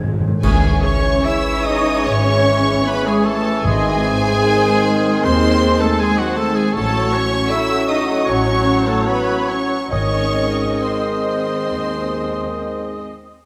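A wet scoring-stage reverb surrounds this solemn, yearning slow romantic movement for full symphony orchestra in C# minor, taken at 76 BPM in 4/4 with uneven, rubato beats and cut from a longer piece. Soft-mallet timpani open with a fill before clash cymbals and concert bass drum, with dark cymbals, mark an accent at 0.4 seconds. There the focused, close violin section takes the melody over a C#m, G#, F#m/A, G# progression, shadowed by very quiet smooth second violins, an oboe, a dark clarinet and an airy flute section. Beneath them sit a rich, expressive viola section with portamento, a bassoon, intense double basses, cellos, distant roomy French horns and very quiet trombones in sustained chords, while tight trumpets add stabs in the background.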